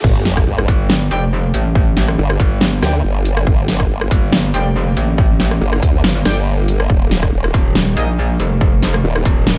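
Two up-front wobble basses dominate this aggressive, chaotic dubstep drop at 140 BPM in G minor: a formant-swept, detuned sawtooth bass with chorus and overdrive, joined at 0.7 seconds by a metallic, bright FM bass with distortion. A punchy, tape-warm electronic kick and a layered kit with a huge snare and metallic, filtered hats drive the swung half-time feel, while a very quiet riser, noise sweep and sub drop open the impact in the first 1.8 seconds. Beneath it all, a very quiet chamber string section holds earthy, lightly vibrato chords moving from Gm to Eb, and a clear brass ensemble adds tape-echoed stabs in the background from 1.1 seconds, all in a dry, cut-down passage.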